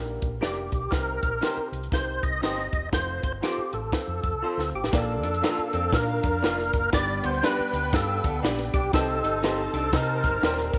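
An uptempo 1960s-style soul groove at 120 BPM in Bb major opens with a woody, long-sustaining upright piano in the background and a round, amped fingered electric bass, joined almost at once by a compact cocktail drum kit with a tight kick and high-tuned snare sitting up front. At 0.4 s a fat, lightly overdriven tonewheel organ takes the melody, its percussive attack, key click, chorus vibrato and slow rotary speaker giving it a bold presence. At the same moment a slightly broken-up electric guitar through a small old amp adds picked stabs with slapback echo. The swung feel is danceable and uplifting, moving through Gm, Cm and F. A drum fill at 4.4 s leads into a second section on Bb, G and Cm. A very quiet, mellow vibraphone played with soft mallets slips in at 4.7 s, and a lush, bowed string section with expressive vibrato joins it on a second line as the new section begins. Another lo-fi, compressed guitar plays a riff with subtle chorus, all under light reverb in this passage cut from a longer piece.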